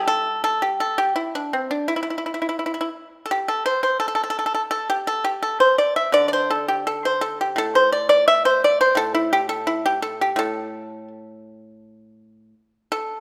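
Rubato phrasing loosely follows a 2/4 pulse around 84 BPM in this elegant, longing traditional Chinese excerpt in the A yu mode, where a solo pipa, plucked with fingerpicks and sounding percussive and up front, ranges from A2 to E5 within a moderate recital hall reverb, with a new section arriving at 11.8 seconds before the cut at 13.2 seconds.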